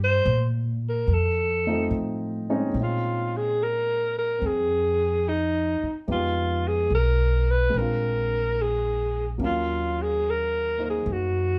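A breathy, mellow alto saxophone carries the melody from the first moment in a subtone, with light vibrato and scooped notes, while a woody pizzicato upright bass sits up front beside it. At 1.7 seconds a warm grand piano with short sustain joins in accompaniment, and the chords move toward Bbm11 at 2.8 seconds in this smoky, intimate jazz ballad excerpt with a gentle swung lilt. The trio sounds like a band playing live together in one large studio, wrapped in moderate reverb.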